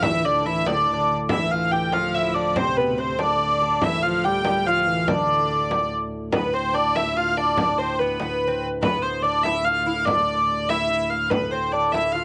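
A driving 6/8 pulse carries this ancient-sounding medieval dance, where a smooth, up-front hurdy-gurdy leads the melody over delicate fingerpicked lute on double gut strings, a biting, reedy viola da gamba that drops out at 5.9 seconds, a low drone from a nasal cornet organ stop with chiff and tremulant, and a hard-handed, saturated frame drum, set in a light studio reverb.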